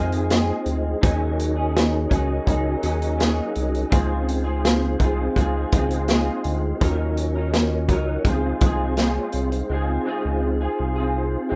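This rough home demo mix has a light reverb and a dulled top end, giving a hazy, sunny piece of indie and bedroom pop at 83 BPM in Db major, heard as a short cut from a longer piece. A raw garage drum kit of hi-hat, kick and snare sits up front with a boomy kick, a pumping small-room sound and a gritty, saturated edge, playing from 0.1 until 9.7 seconds. Beneath it, a round analog bass holds low with a deep, dark, sustained tone and a fast attack, while an electric guitar through a small old amp adds slightly broken-up, picked, lo-fi playing treated with ensemble chorus and vibrato. A soft, flute-like tonewheel organ with key click and a fast rotary speaker floats above, stepping forward with a fill from 2.5 to 3.9 seconds. The chords move from Fm7 and Ab7sus4 to Dbmaj7 and Ebm7, and a brief new section begins at 9.7 seconds as the drums stop, leaving bass, guitar and organ to carry on.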